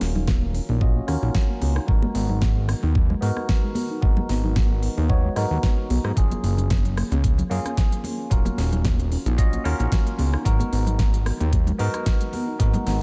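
Sleek and groovy, this nu-disco cut, taken from a longer piece, rides a swung sixteenth-note feel in 4/4 over a looping progression of D#m7, G#m7 and F#maj7. A knocking, tape-warm electronic kick sits up front beside a fat, thick analog bass built from detuned, saturated sawtooth tones that evolve under its own filter sweep. A layered pop drum kit adds a fat snare, crisp hats and rim clicks, while bright, hard-hand congas play close and dry in the background from 0.2 seconds. A bell-like tine electric piano carries the chords through phaser, sidechain pumping and a diffuse ambient delay, with a low-pass filter sweep running across its full 13 seconds. Underneath, a soft, round pluck spins gentle arpeggios, its dark, decaying tone thickened by chorus, tape echo and the same pumping. A light reverb ties the mix together.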